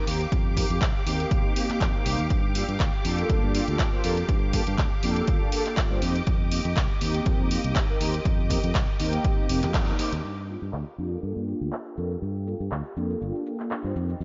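A lightly reverberant mix with a softly rolled-off top frames this groovy, nostalgic filtered disco house cut in G minor at 121 BPM, its swung sixteenths pulsing under sidechain pumping as the chords move between F9sus4 and Gm7. Round, detuned synth brass with chorus and phaser carries the accompaniment over an up-front fingered electric bass, while a distant, biting string section holds lush sustained chords above. A layered house kit with bright hats, cabasa and handclaps joins a punchy analog kick and a very quiet, far-off tambourine; after a band accent at 9.7 seconds the kick and tambourine drop out, and from 10.2 seconds a filter sweep runs across the drums and the whole mix to the end.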